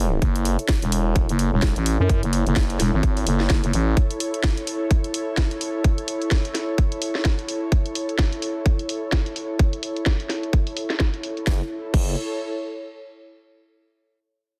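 Swaggering and aggressive, this bass house excerpt moves at 128 BPM in 4/4 with a swung sixteenth-note feel, sitting on F# minor throughout. A growling, thick FM bass with a fast attack and overdrive sits up front, pumping against the sidechain; it plays from the start until 4.0 seconds, then returns briefly at 11.5 seconds. Above it, an airy, breathy pad built from detuned sawtooth and triangle tones with a noise layer and ring modulation holds a soft, mellow bed through chorus, also pumping with the sidechain and sustaining to the end. A tight, up-front electronic kick drives the groove from 0.2 seconds alongside a garage kit of crash cymbal, filtered hi-hats and a cracking, soft-clipped snare, both in studio reverb. The sound is dense and heavily limited, with light reverb overall, and a brief closing section begins at 11.5 seconds.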